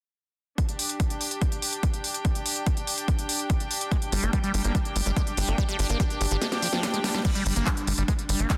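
A punchy, layered electronic kick drives this hypnotic psychedelic trance excerpt from 0.6 seconds, up front beside a techno drum kit with a cracking snare, smooth hi-hats, handclaps and crash cymbal, while a reedy, gut-string studio string section with light vibrato pumps beneath. A squelchy, resonant liquid acid bass with phaser and digital delay enters at 3.9 seconds, soon joined by a tight, saturated sawtooth sequencer bass holding one low note, and the kick drops out for a drum fill at 6.4 seconds. In the closing section an evolving, detuned wavetable pad with chorus sits faintly in the background of a dense, heavily limited mix with light digital ambience.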